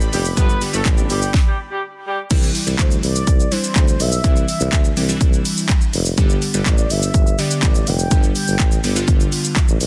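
Dance-pop at 124 BPM in a straight 4/4, this short excerpt in C major has a carefree, summery lift and a dense, heavily limited modern sound with little reverb. An overdriven house drum kit sits up front throughout, its punchy kick, cracking snare, bright hats, handclaps, shaker and crash driving the groove, while a warm tuba with vibrato carries the bass line underneath, pumping with the sidechain. The opening moments layer a shimmering retro pulse-width pad in the background, a very quiet, slightly broken-up electric guitar riff through a small old amp, and a clear, tight vintage horn section playing the melody with dub echo. After a stop from 1.3 to 2.3 seconds, the music moves from G to Cadd9, and glassy digital keys with chorus and a filter sweep keep up an airy accompaniment. From 2.8 seconds a mellow, round horn-like synth lead takes over the melody, colored by chorus, phaser, vibrato and dub echo, before the harmony returns to G at 6.2 seconds.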